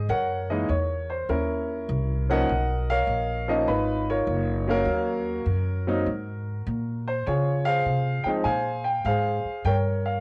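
A clear, open baby grand piano carries the melody up front in this short jazz piano trio excerpt, its tone colored by a cassette tape character. An upright bass plays pizzicato beneath it on gut strings, woody and thumpy, sitting close and present for the whole 10.2 seconds. The mood is sophisticated and swinging, at 100 BPM in 4/4 with a lilting swing on the eighth notes, tuned slightly sharp to A4 = 441 Hz. The harmony moves through rich extended chords, opening on Gb13 and passing through Bmaj9#11, Ebm7, Absus2 and Dbmaj7 before landing on Gm7b5. Light small-room reverb and the home cassette recording give the sound an intimate, lived-in quality, and the passage is cut from a longer piece.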